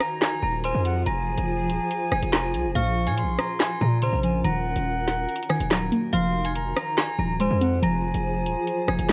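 A hard-hitting 808-style bass drops in at 0.4 seconds, punchy and heavy with a fast attack and decaying tail, sitting up front beside an electronic drill drum kit of handclaps, hi-hat, rim click and a woody snare over warm hats. This is an ominous, menacing drill hip hop excerpt at 142 BPM in a half-time feel, set in F phrygian and moving from Fm through Bbm and Ebm back to Fm. A metallic FM bell carries the melody with an inharmonic, ringing, bright tone treated with chorus, while a reedy concert flute with an airy straight tone plays a second line through tape echo. Beneath them, a granular cloud pad holds blurred, evolving sustained chords in its own reverb. From 2.8 seconds a warbly dusty pluck adds dark, detuned, lo-fi accompaniment with chorus and a filter sweep. The whole recording is dry and carries the wobble of worn old cassette tape, with a drifting pitch that adds a vintage character.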